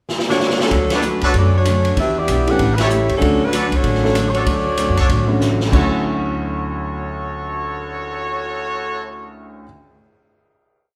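Swinging and energetic, this short big band swing piece opens with a drum fill before the close-miked saxophone section carries a motif-based melody with vibrato in four-part block voicing. Behind it, a woody pizzicato upright bass plays in two, a dark, compressed hollow-body electric guitar strums in the background, a distant, roomy drum kit with punchy kick and ride cymbal drives the swing, and a bright trumpet section adds syncopated stabs in close voicings. A clear grand piano with audible action noise joins at 2.5 s with syncopated drop-2 comping, and the band holds a final chord from 5.7 s in a moderate concert-hall reverb.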